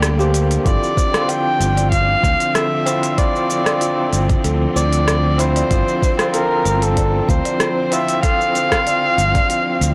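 Organic downtempo at 95 BPM in a mystical mood, this blown-out, overdriven fragment pairs a dark, intimate kamancheh melody with vibrato and portamento up front against a barky, gritty tine electric piano with fast tremolo, tape echo and sidechain pumping, lush bowed strings sustaining chords, a woody kalimba arpeggiating in the background, and a growly, amped fretless bass, while crisp hi-hat, cabasa and rim click from an organic electronic kit are joined at 0.7 s by a soft electronic kick as the harmony moves from Gmadd9 to Dm7/G under light reverb.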